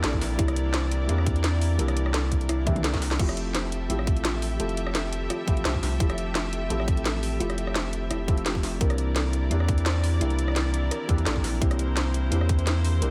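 A felt-muted upright piano with audible action noise and delay plays from the very start of this uplifting, warm liquid drum and bass excerpt at 171 BPM in F major, alongside distant bowed symphonic strings carrying vintage 12-bit grit and sidechain pumping, a dark, tine-like FM pluck playing chorused, delayed arpeggios in the background, a round sine sub bass up front, a tight electronic kick from 0.1 seconds, and a kit with cracking snare and metallic hats whose fill at 2.7 seconds leads the harmony from C9 to Fmaj9 before returning to C9 at 8.8 seconds.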